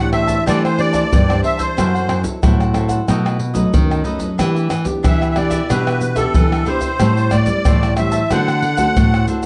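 The recording has a dark, warm production with light reverb, placing a small string-and-percussion group close to the listener in a short clip cut from a longer samba and choro piece. At 92 BPM in a straight 4/4, the mood is playful and festive, with the musette accordion carrying the melody up front in a reedy, shimmering voice from A4 to F#5. Beneath it, a fingerpicked classical nylon-string guitar sits up front in accompaniment, joined by a crisp, picked cavaquinho. A second nylon-string guitar, deep and fingerpicked, covers the bass line between F#2 and E3. Tube shaker, pandeiro, tamborim and a tight surdo play up front in a small-room sound, while the harmony moves through Am7, F#m7b5, B7 and Em7 before returning to Am7 and closing on D7 at 8.3 seconds.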